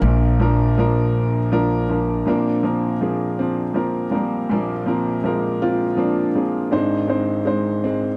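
An upright piano and a plucked, dark-toned upright bass open this tender, intimate folk-pop ballad fragment in a lilting six-eight, the bass plucking a low Bb before dropping out at 2.2 seconds. The piano carries the melody alone from there, sitting up front with a clear, boxy tone, long sustain and audible action noise, as the harmony moves from Bb to a suspended Bb and then to Ab at 6.7 seconds. The small, dry room gives it the close feel of a 1970s studio.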